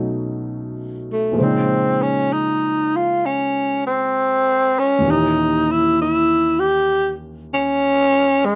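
Intimate and romantic, this slow jazz ballad at 65 BPM swings gently in 4/4 as a growling tenor saxophone, breathy and raspy with subtone, vibrato and scooped notes, carries the melody up front over a warm grand piano whose audible action noise adds closeness, all in a moderate studio reverb across an 8.6-second excerpt cut from a longer piece.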